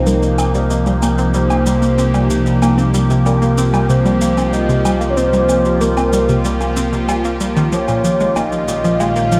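Ambient, sequencer-driven space music with a hypnotic, mysterious air, cut from a longer piece and set in a vast, echoing cathedral-like space. An up-front analog drone with pulse-width movement holds the bass while an evolving, morphing wavetable pad under phaser sustains chords from Cm toward Bbm at 7.7 seconds, and a detuned sawtooth pluck with a filter sweep repeats a short riff through chorus and delay. A mellow, octave-layered lead sings with vibrato above, a breathy wind-like noise texture hovers very quietly, and overdriven electronic shaker and woodblock, re-recorded in a large room, enter at 0.1 seconds with echoing delay.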